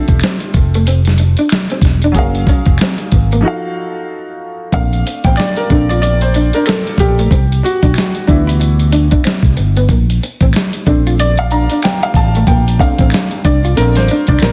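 A dense, heavily limited modern master sits in a small room ambience on this relaxed, soulful neo-soul R&B cut, taken from a longer piece and moving at 93 BPM in 4/4 with a swung sixteenth-note feel. Up front, a dusty sampler-style drum kit brings a thumpy kick, fat snare and hi-hat with a gritty, tape-warm character, while a fingered electric bass sounds dark and round beside it. A clear upright piano, woody and slightly detuned with short sustain, carries the accompaniment from the start, and an electric guitar through a small old amp adds a slightly broken-up, lo-fi second line touched with subtle chorus. Maracas and finger snaps sit in the background, adding a quiet acoustic layer. The harmony drifts through Fmaj9, Gbmaj9 and F7b9, with a break at 3.4 seconds before settling into Bb major at 4.7 seconds, where the upright piano takes a solo over Bbmaj9 and Cmaj9 through to the close at 14.5 seconds.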